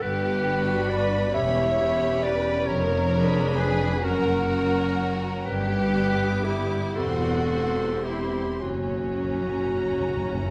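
Elegiac and melancholic, this slow classical passage in 6/8, cut from a longer piece, moves with rubato at 34-46 BPM in dotted quarters: a distant, mellow clarinet and a clear second violin section share the inner line over a focused cello section and a lush double bass section with a smooth top, a smooth viola section accompanies from 0.5 s as a rich, expressive high violin melody floats above with soft attack and vibrato, and timpani with hard mallets add an articulate background fill from 8.6 s, all within a moderate scoring-stage reverb.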